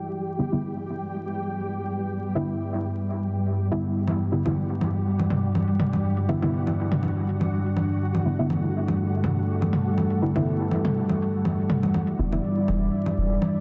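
A moody, detuned analog pad opens this meditative, cavernous dub techno fragment, holding sustained Em7 chords up front with a sub octave, chorus and a filter sweep. Beneath it, a grainy, flickering granular texture sits quietly in the background, bathed in its own reverb. Soft, nasal chord stabs with a short plucked decay come in almost at once, colored by chorus, phaser and dub echo. At 4.1 seconds, overdriven electronic congas and toms join, layered and roomy, trailing dub echoes over a lightly swung 16th-note feel. Near the close, at 12.2 seconds, a round, deep sub bass arrives up front on a low E, just before the passage cuts off. A moderate spring reverb lends the whole a cavernous depth, while a dense, heavily limited master carries a vinyl crackle.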